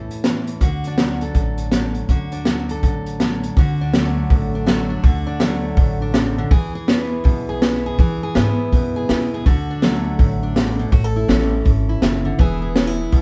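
A picked steel-string acoustic guitar with a full-bodied jumbo tone and a thumpy, woody pizzicato upright bass on gut strings open this excerpt of honky-tonk and classic country, with a vintage drum kit joining at 0.1 s. The tempo is a brisk 163 BPM in 4/4, with a 63% swing on the eighth notes that gives the groove a loping, nostalgic and heartfelt feel. The guitar sits up front as accompaniment, moving from an A5 chord through D, E and D, then back to A and on to E. The drums are also up front, with a punchy kick, a medium-tuned snare and hi-hat in a dark, smooth kit with a rolled-off top. The band plays live together in one small room, and a moderate reverb adds a close, natural ambience, with a new section arriving at 3.6 s.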